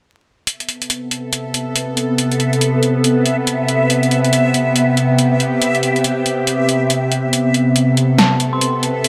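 A punchy, overdriven electronic kit of hi-hat and snare opens this dark, brooding deep dubstep piece at 140 BPM, which moves in a swung half-time feel, and from 0.9 s a tense, string-like drone of detuned sawtooth tone with phaser and vibrato holds an Amadd9 chord. It is joined by a reversed, granular texture that swells dreamily on a single high note. During the build-up from 7.3 s, a brief, eerie, inharmonic FM bell with chorus and dub echo appears at 8.2 s, and the whole recording sits in a wet echo chamber with gritty hardware grain and vinyl crackle.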